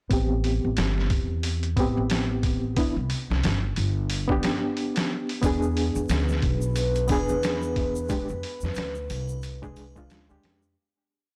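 A looped breakbeat with edits swings its sixteenths at 90 BPM in 4/4: the sampler-style kit is pitched down, compressed and gritty, with a thumpy kick and a medium-tuned snare sitting up front. This smoky, hypnotic trip hop piece in A minor pairs it with a pizzicato upright bass playing a syncopated riff on woody gut strings, and with a reedy, worn electric piano whose rootless chord stabs carry fast tremolo, tape echo and vintage 12-bit grit, slightly out of tune, under a filter sweep. The harmony moves from Am7 through a rootless Cmaj7 and E7 to Fm6. At 5.4 s a close, dry tube shaker and triangle slip in softly in the background, and at 6.0 s a deep, moody analog pad arrives, detuned sawtooth with a sub octave, a slow attack, chorus and phaser, holding a single high note. The blown-out, overdriven recording is wrapped in vinyl crackle and light digital ambience, and it fades out from 7.2 s.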